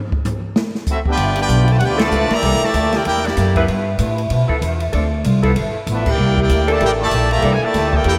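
A brilliant, up-front trumpet section carries the melody in this energetic, brassy big band swing excerpt, playing with light vibrato and a soft attack. It opens on a short drum solo from an acoustic jazz kit, with a boomy kick and medium-tuned snare in a small room, before the brass enters at 0.9 seconds. Warm, vintage trombones with vibrato, a loose feel and a touch of tape echo play a second line beneath the trumpets, and both brass sections drop out for a stretch in the middle before returning. From 1.2 seconds, a woody pizzicato upright bass sits up front, while a boxy picked acoustic guitar with ensemble chorus picks out swing accompaniment in the background. A dark saxophone section joins at 2.0 seconds to hold sustained chords, and the band hits accents at 2.0 and 6.0 seconds, all bathed in a lush hall reverb that gives the mix a dreamy glow.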